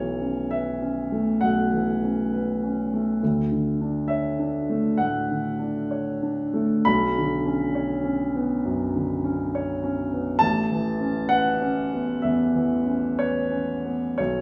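Bathed in a wet recital-hall reverb with a touch of small-room ambience, this mysterious, wistful stretch of impressionist classical solo piano, cut from a longer piece, drifts at 66 BPM in 4/4 with uneven, rubato beats, its up-front concert grand, deep in the bass, open in tone and long in sustain, ranging from A1 to B5 over chords that move from A69/B through Dmaj7 and Bmadd9 to Aadd9 at 10.4 seconds.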